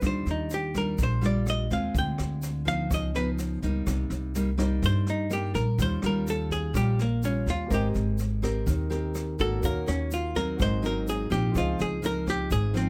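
A dark, clean archtop guitar plays a picked hollow-body solo up front in this romantic, sophisticated bossa nova excerpt at 125 BPM in Eb major, over fingerpicked classical nylon-string guitar, woody pizzicato upright bass, brushed drums with a boomy kick and high-tuned snare, a grainy egg shaker in the background, and a warm baby grand piano that sounds at the start and returns at 7.7 seconds, all in light reverb as rich chords such as Ebmaj9, Db9 and Abmaj9 pass by.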